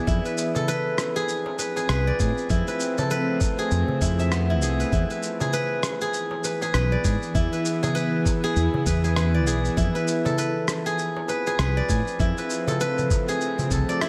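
A silvery steel-string zither, played with fingerpicks and ringing through tape echo, spins arpeggios up front over a round, dark fretless bass with tube saturation, a tense detuned bowed-like drone with vibrato, a gritty thumpy electronic kick, crisp hard-handed darbuka, sampler-style shaker and rim click, and a barely audible bronze singing bowl, all in a moderate echo chamber for an earthy, meditative organic downtempo excerpt with a swung sixteenth-note feel.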